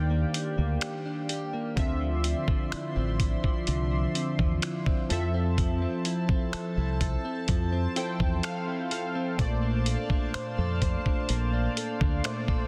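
A late-night, longing contemporary R&B passage opens on round, detuned analog keys with chorus, a shimmering, retro pulse-width pad, bright, clean picked electric guitar arpeggios touched with subtle chorus and delay, and a dark, punchy fingered bass up front, joined at 0.3 seconds by a gritty, sampler-style drum kit with a thumpy kick, finger snaps, hi-hat and a soft-clipped snare, while the filter-swept keys add a fill at 7.5 seconds in a dry, dense, heavily limited mix.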